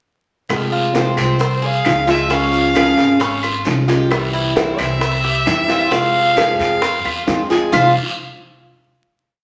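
A nasal, vibrato-rich bowed violin carries a motif-based melody up front from 1.0 s in this nostalgic, danceable Cuban son and guajira piece at 133 BPM in F harmonic minor, over a bright, metallic tres guajeo, a boxy fingerpicked steel-string parlour guitar with finger squeak and muted slaps, a thumpy gut-string upright bass tumbao that anticipates the Fm, Db and C chords, tight high-tuned bongos in steady eighths, woody claves on a two-bar time line, raspy guiro and very quiet, grainy maracas, set in large studio reverb with vinyl crackle before closing on a final F5 chord at 7.7 s.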